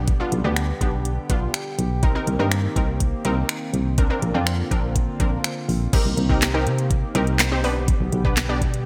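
Bright 1980s-style digital production with light reverb and a digital ambience frames this energetic, confident dance-pop cut in C minor at 123 BPM, moving through G/B, Cm7 and Bbadd9 before a new section arrives at 5.9 seconds. An electronic R&B drum kit sits up front with a knocking kick, sharp snare, metallic hats, finger snaps, handclaps and a crash, beside a punchy, round FM bass. A lush, detuned sawtooth unison pluck with a filter sweep and subtle chorus carries the accompaniment over a shimmering, retro pulse-width pad of sustained chords, and the pluck, pad and bass all pump with sidechain.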